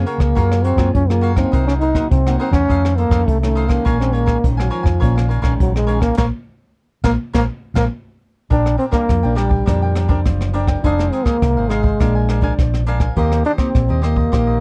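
A straight 4/4 samba and choro groove at 103 BPM carries this nostalgic, yearning passage from a longer piece, with a breathy, close-miked trombone melody with light vibrato up front over a round, punchy hollow-body electric bass, crisp picked cavaquinho, fingerpicked nylon-string guitar and a brushed drum kit with a boomy kick and rolled-off top, all in a dry, dark mix that shifts from Bb minor to Bb major at 8.5 s after a band accent from 6.2 s and a drum fill at 8.2 s.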